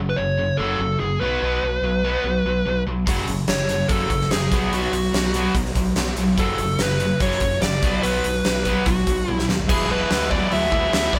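A band playing live in one room, lightly touched by reverb, drives through this swaggering classic rock passage cut from a longer piece. Two bright, picked electric guitars, one distorted and compressed, the other overdriven, sit in the background on riffs over a growling, overdriven fingered bass, while a dark, fuzz-toned lead guitar carries the melody up front over chords moving between F#m and B5. A huge arena drum kit with a punchy kick and medium-tuned snare enters at 3.1 seconds, a fill at 9.3 seconds leads into an E chord, and at 9.7 seconds a very quiet tonewheel organ adds full sustained chords through a slow rotary speaker.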